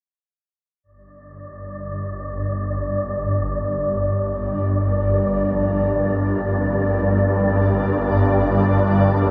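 A swarming, detuned drone sits up front from 1.4 s, low in the register and tense, joined at once by a breathy, wind-like tuned noise layer high above it. This fragment of a vast, ominous dark ambient piece drifts in free time around G minor, with a blurred granular cloud pad holding sustained chords in the background from 2.2 s. A pure-toned quartz singing bowl, barely audible, adds faint ringing arpeggios from 5.5 s, all bathed in a long, wet cathedral reverb.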